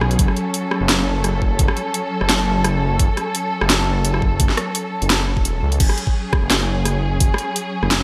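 Bright, 1980s-style digital production with light reverb and a digital ambience frames this dark, tense slice of half-time drum and bass, cut from a longer piece. A muted string section sustains veiled, con sordino chords with vibrato, a soft attack and a smooth top, roughened by vintage 12-bit sampler grit and pumping under a sidechain. Beneath it, a deep, rumbling detuned saw bass with unison beating holds the low end, thickened by tube saturation. The up-front drum kit brings a cracking snare, bright hi-hats, rim clicks and crash cymbal, overdriven and caught in gated reverb. An overdriven, knocking electronic kick joins at 0.2 seconds and drops out at 7.3 seconds, with a brief break from 5.5 to 5.8 seconds before the drop returns.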